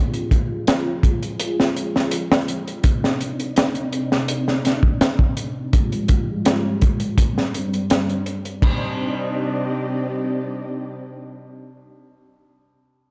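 A dark, gritty trip hop excerpt at 83 BPM in C minor, where a crunchy, saturated breakbeat kit with a punchy kick and high-tuned snare runs until 8.8 seconds beneath full-bodied, vintage string-machine cellos holding chorused sawtooth chords through a filter sweep, moving from Fmadd9 to Cmadd9, back to Fmadd9 and a Gsus4 before settling on Cmadd9 alone in a melancholic small-room haze.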